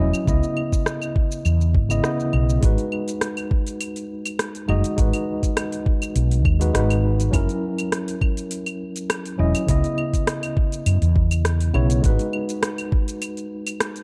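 Sunset chillout in G# minor at 102 BPM, this warm, smooth excerpt cut from a longer piece sets a worn, slightly out-of-tune tine electric piano, lightly overdriven with digital delay and heard through built-in speakers, over a round, hollow-body fretless bass that drops out at 12.2 seconds, a knocking electronic kick, and a smooth R&B kit of claves, metallic hi-hat, rim click and shaker, moving through C#m9, G#m7 and F#7 in a dark production with light reverb and digital ambience.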